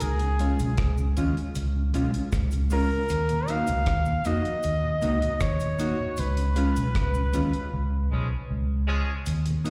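Roots reggae at a laid-back, meditative 78 BPM in 4/4, moving from Db to Ebm and back, with an up-front flugelhorn carrying the melody in a warm tone with light vibrato and scooped notes, trailed by tape and slapback echo. Underneath sit a round, punchy, foam-muted electric bass, a dry drum kit with a tight kick, hi-hat and rim click, a compressed cabasa in the background, a mellow tonewheel organ turning on a slow rotary speaker with chorus vibrato, and a clean, dark electric guitar bathed in spring reverb. A band accent arrives at 6.2 s and a break at 7.7 s, and a clear horn section playing in octaves enters at 8.1 s. The whole fragment sounds like a live gig heard through the venue's PA with a recital-hall reverb.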